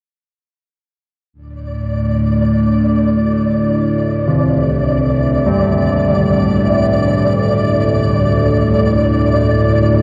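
This dark, unsettling ambient drone piece in free time, tuned to A4 = 437 Hz and cut from a longer work, opens at 1.3 s with a very quiet analog pad holding sustained Dsus2 chords. The pad's detuned square, sawtooth and triangle tones and sub octave give a deep, moody shade, with a moving notch and chorus. Moments later a low drone rises up front in the D2 to A2 range, its sawtooth and sine layers resonant with moving overtones, treated with chorus and its own reverb. A grainy, flickering high texture on D5 joins at 1.7 s, sustained and detuned, glinting through built-in and shimmer reverb. From 4.3 s, carillon bells ring out arpeggios between C3 and G3, their bronze, bell-like tone carrying a minor-third overtone and struck by an iron clapper, repeated by tape echo. The whole mix sits in a huge, wet reverb with a long 8.7-second decay, lending the production a dark, warm character.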